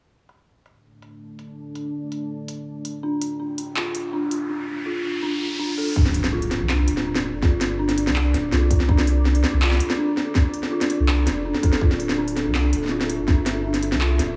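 A half-time groove at 164 BPM in D minor drives this dark, tense drum and bass excerpt. An industrial kit of clanging snare, smooth filtered hats and handclaps, tape-warm and re-recorded in a large room, sits over a deep, moody pad whose sustained, wave-folded chords pump under sidechain. From 3.0 seconds an eerie, inharmonic FM bell plays arpeggios through 12-bit grit and tape echo, and a riser leads into an impact at 6.0 seconds, where the drop brings a hard-clipped, up-front electronic kick and a thick, saturated triangle sub bass.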